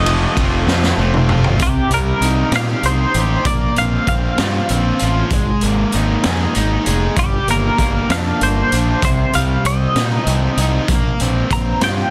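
Opening on an F7 chord, a bright, twangy, compressed twelve-string electric guitar carries the melody through tremolo and digital delay over a double-tracked distorted guitar riff and a fuzzy, overdriven fingered bass, while a gritty, boomy, small-room garage drum kit with a rolled-off top drops a fill from 0.7 seconds in this cool, restless 6/8 indie rock fragment at 65 BPM, before a clean electric guitar solo enters at 1.6 seconds across Cm, Bbsus2, Absus2 and Gm changes in a dense, heavily limited, nearly dry mix.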